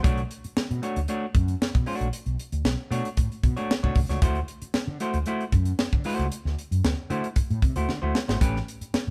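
A straight 4/4 funk groove at 115 BPM struts with a gritty edge, driven by a dry, polished drum kit with a high-tuned snare, tight kick and hi-hat, a round, amped fretless bass, and a dark, clean, hollow-bodied semi-hollow electric guitar fingering Bm9 and D9 chords, all up front in a lightly reverberant live room, with a drum fill at 7.9 seconds leading to an A9 before this excerpt ends.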